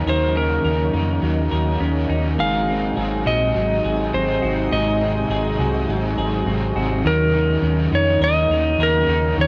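A hazy, haunting dream pop excerpt opens with the full band together: a clean lap steel guitar carries the melody up front, played with slide and fingerpicks, its volume swells trailing into delay. Beneath it, a clean electric guitar picks chorus-tinged arpeggios through delay, while a raw garage guitar adds overdriven accompaniment shaded by harmonic tremolo and subtle chorus. A shimmering, ethereal pad sits in the background with slow-attack, sustained chords, its detuned, granular tone lifted by an octave-up shimmer and softened by chorus and built-in reverb. A round, dark hollow-body bass, fingered and up front, anchors the low end. The harmony moves from Ebm7 to Ab7 at 2.4 seconds and returns to Ebm7 as a new section begins at 7.1 seconds, all bathed in light reverb and the worn, warbling pitch drift of old cassette tape.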